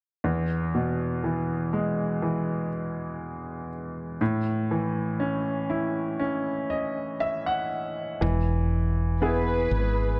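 A tender, hopeful pop passage, cut from a longer piece, opens on a bright, brilliant grand piano that carries the accompaniment over an E to A chord movement and adds a fill from 6.2 s. At 8.2 s a round, hollow-body fretless electric bass enters with a woody, direct tone, and at 9.2 s a lush, bowed violin section with vibrato joins on the melody, dark and smooth on top, with digital delay. A moderate plate reverb and a dark production surround the up-front sound.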